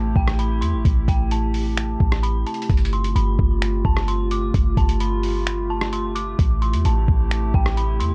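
A deep, boomy 808-style bass sits up front in this hazy, spacious cloud-rap excerpt, its clean sine tone decaying under a half-time groove from a muffled, compressed lo-fi drum kit of thumpy kick, rim click, finger snaps and hi-hat that enters at 0.2 s. Above it, a warbling, nostalgic tape-like pad holds slow-blooming chords moving from Am7 to G9sus4 and back, with chorus, built-in reverb and sidechain pumping. A quieter, eerie detuned synth bell traces an inharmonic FM melody through phaser, tremolo, chorus, low-pass filter and analog delay, all within a dry, gritty mix with a hardware-recorded character.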